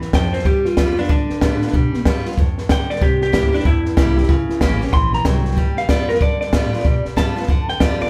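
Upbeat and rowdy, this short rockabilly excerpt swings at 188 BPM in 4/4, sitting in G mixolydian with a live, one-room feel and a touch of reverb. An electric guitar through a small old amp carries the melody as a clean solo from 0.2 seconds, its tone slightly broken-up, compressed and lo-fi, picked and placed up front. The compact cocktail drum kit is also prominent, with a punchy kick, a high-tuned snare and hi-hat giving a dark, smooth sound from a small room. Underneath, a pizzicato upright bass with gut strings adds a woody, thumpy pulse from the background, while a picked dreadnought acoustic guitar with fresh strings supplies bright accompaniment. The harmony moves from G7 to C7, passes through C#dim7 at 4.3 seconds, and returns to G7.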